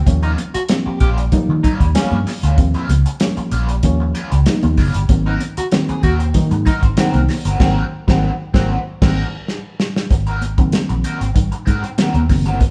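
Playful and energetic, this funk excerpt moves at 96 BPM over Eb9 and Ab9 chords, with a warm soul drum kit sitting up front with its tight kick and dark cymbals, a dark, punchy muted electric bass, and reedy, slightly out-of-tune electric piano stabs. A raw garage guitar with wah and overdrive fills in the accompaniment while ringing, high-tuned congas sit in the background, and a mellow baritone saxophone with vibrato carries a second line until 9.2 seconds. The band hits an accent from 7.6 seconds, capped by a drum fill into a new section at 10.1 seconds, all captured live in one stone room with a cassette-tape character.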